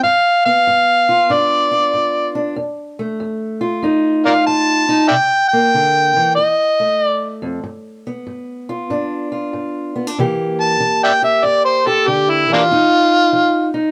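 Harmonica and fingerpicked steel-string acoustic guitar start together in this laid-back, rollicking acoustic country blues excerpt, moving at 95 BPM in 4/4 with a swung eighth-note feel. The amplified, overdriven harmonica carries the melody with a gritty edge, light vibrato and tongue slaps, phrasing in a jazz style and sitting up front, louder than the guitar. The parlour guitar supports it with a dark, boxy fingerpicked accompaniment, also placed up front. The chords move through G7, F7 and C7 before the harmonica takes a solo from 10.2 seconds over C7, closing on F5 near 12.7 seconds. Light reverb gives the duo a sense of space, and the passage is cut from a longer piece.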